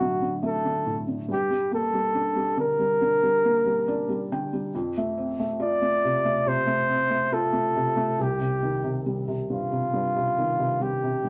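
A small room lends a moderate, close ambience to this short acoustic folk-pop ballad in a straight 4/4, which carries a melancholic, heartbroken mood. A mellow flugelhorn sits up front and carries the melody as the solo voice, shaping its lines in a jazz style with light vibrato and scooped notes. Beneath it, a felt-muted upright piano provides accompaniment, its soft, intimate tone and short sustain also placed close to the listener. Both parts play together from the first moment to the cut at 11.3 seconds, moving through D, Gmadd9, F and Cm. The result is a hushed, aching fragment cut from a longer piece.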